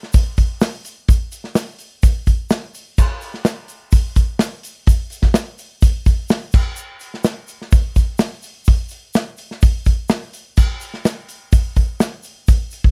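A punchy, up-front acoustic country drum kit with dark cymbals and a medium-tuned snare drives this wistful, reflective 12.9-second rock cut at a straight 126 BPM in 4/4, while a grainy, bright tube shaker sits compressed and saturated in the background of a dry, close 1970s-style studio sound.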